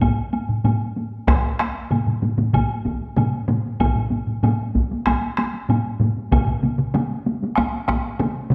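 Solo taiko drums struck with heavy sticks open this powerful, driving excerpt of Japanese traditional taiko ensemble music in a straight 4/4, dropping out at 6.1 seconds while three up-front taiko ensemble parts pound on, one saturated and compressed, one hard-sticked and close and dry, and one joining at 1.3 seconds, as a woody woodblock sits further back and a dark recital-hall reverb fills the space.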